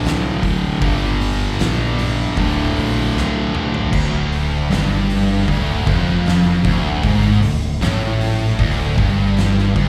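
Heard as a live gig through the venue's PA with a recital-hall reverb, this heavy, brooding stoner and doom metal passage in D minor crawls along at 77 BPM. A bright, double-tracked distorted guitar with overdrive and slapback echo plays the riff over two thick fuzz guitars, one warm and one dark, that sit in the background, while a picked electric bass adds overdriven low end. An oversized, low-tuned drum kit with a boomy kick, fat snare, dark cymbals and a gritty, pumping room sound plays a fill from 3.1 to 3.9 seconds that leads into the next section.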